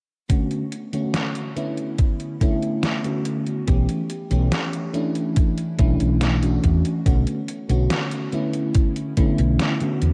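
A thumpy, up-front electronic kick anchors a straight, unhurried 4/4 groove from 0.3 seconds, with a detuned 8-bit drum machine adding hi-hat and a medium-tuned snare, all with a tape-warm, small-room character. A lush, dreamy FM electric piano layered with a soft pad carries the Bm7 to A7/B to Dmaj9/B harmony through phaser, subtle chorus and diffuse ambient delay, while a dark, round fretless bass with ensemble chorus joins at 3.7 seconds. This nostalgic, melancholic vaporwave fragment is cut from a longer piece and sits in light digital reverb with a cassette-tape sheen.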